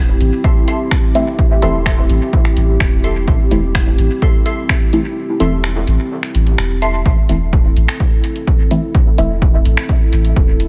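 Meditative and hypnotic, this dub techno excerpt moves in a straight 4/4 pulse, held on a single A minor chord throughout. A dark analog pad sustains slow-attack chords underneath, its detuned, wave-folded tone treated with chorus and sidechain pumping, while a soft, round sub bass, also pumping, fills the low end. A punchy, tape-warm electronic kick sits up front from 0.4 seconds, backed by a deep house kit of finger snaps and metallic hats carried on dub echo. Two filtered dub chord stabs, both muted and detuned with fast attack and short decay, weave through the mix: a higher, evolving riff with lush chorus and phaser, and a lower stab part with a plucky filter, both sent into dub echo and sidechain pumping. Filter sweeps run over the synth stab, and the kick drops out between 5.2 and 7.1 seconds before returning, all within a light reverb.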